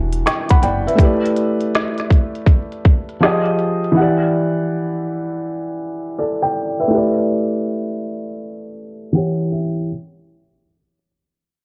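Hazy vinyl crackle, a moderate spring reverb and a filter sweep colour this nostalgic lo-fi hip hop excerpt, where a soft, boxy felt-muted upright piano with audible action noise carries the swung accompaniment up front over Em7, A7sus4 and Fm7 chords, a dark, growly pizzicato upright bass sounds only until 0.8 s, a tight-kicked, woody-snared electronic kit with crisp hats plays from 0.1 to 4.0 s, and the piano closes with a fill from 8.8 s that runs into an Em69 chord at 9.1 s.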